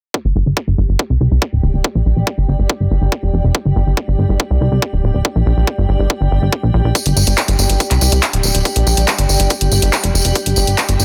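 A dense, heavily limited and fairly dry psychedelic trance excerpt in G minor at 141 BPM, intense and driving, built on a tight, overdriven electronic kick with a high-pass filter and a punchy, wave-folded plucky analog bass up front, while a blurred, detuned granular cloud pad pumps in the background with its own reverb, and from 7.0 seconds a drum and bass kit with overdriven handclaps and bright hats enters together with a jingly, saturated tambourine.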